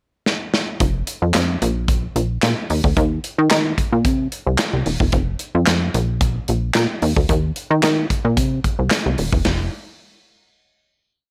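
A light reverb glosses this short, complete piece of slick, danceable early-eighties boogie funk, played straight in 4/4 at 111 BPM and tuned to A4 = 445 Hz. A modern studio drum kit opens with a fill at 0.3 seconds during the pickup bar, its acoustic, mid-forward sound carrying a punchy kick, a medium-tuned snare layered with handclaps, hi-hat and ride cymbal, all with a rolled-off top and a gated reverb. At 0.8 seconds the plucky analog bass arrives up front with a fat, syncopated boogie line between Eb1 and Eb3, full of slides and chromatic approach notes. Its tone blends sawtooth, square and sine waves with ring modulation and wave-folding, shaped by a fast-attack filter pluck that decays for a funky bite. Drums and bass drive the mid-tempo verse together before the piece settles on a final chord at 9.5 seconds.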